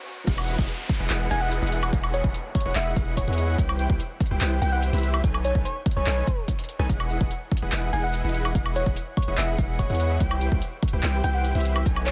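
Future bass in a bright, lush half-time groove, this excerpt opens with a noise sweep and downlifter before the drop lands at 0.3 seconds, where a huge, detuned supersaw riff with digital delay, a deep, up-front 808-style bass with tube saturation, and an airy, dreamy arpeggiated lead in the background all pump with sidechain over a punchy, overdriven kick and a pop kit of metallic hats, handclaps, woodblock and crash cymbal, joined at 1.3 seconds by a round, keys-like FM melody lead, all in a dense, heavily limited mix with little reverb, moving through Emaj9, Cmaj7 and B13 chords.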